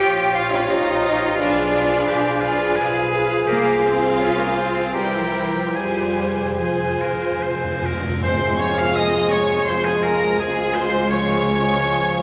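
Classical orchestral music: a slow, elegiac and yearning romantic movement in 3/4 with a rubato feel, cut from a longer piece, in which a lush, vibrato-rich violin section carries the melody. A second violin section, a bright, present oboe, an airy, hollow flute and a warm clarinet weave second lines over a dark bassoon and a distant viola section with portamento, while clear, roomy French horns hold sustained chords above rich cellos and focused double basses. Round, soft-mallet timpani and background cymbal swell and tam-tam enter at 3.5 seconds, a timpani fill leads to a full-band accent at 8.2 seconds, where a very quiet trombone section joins on sustained chords, all set in a wet scoring-stage reverb.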